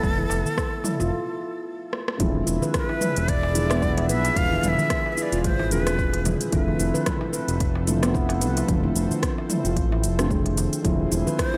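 Lightly reverberant and hypnotic, this meditative organic downtempo excerpt at 111 BPM in E phrygian dominant sets a breathy, reedy ney melody with vibrato and delay over an airy chorused pad, a smooth sawtooth-and-triangle synth bass, an overdriven deep electronic kick and large-room electronic kit with smooth hats, rim clicks, cabasa and toms, ringing steel handpan arpeggios, a soft clay darbuka in the background, and a boxy felt-muted upright piano with 12-bit grit entering at 2.2 seconds after a brief break and drum fill, while the ney drops out at 6.3 seconds and returns just before the end.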